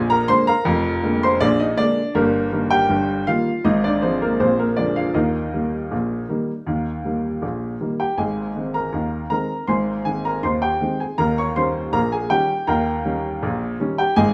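A moderate, large studio reverb gives this short ragtime piece a lively sense of space, as if captured live in one room. A solo upright piano sits up front, its clear, woody tone slightly detuned, with short sustain that keeps each note crisp. At a straight 80 BPM in 2/4, the mood is jaunty and playful, moving through a Bb7 to Eb progression in Eb major. At 8.2 seconds the music shifts into Ab major for a new section, moving from Ab to Eb7. The piano ranges from F1 up to Db6 and plays through to 14.3 seconds, where this cut from a longer piece ends.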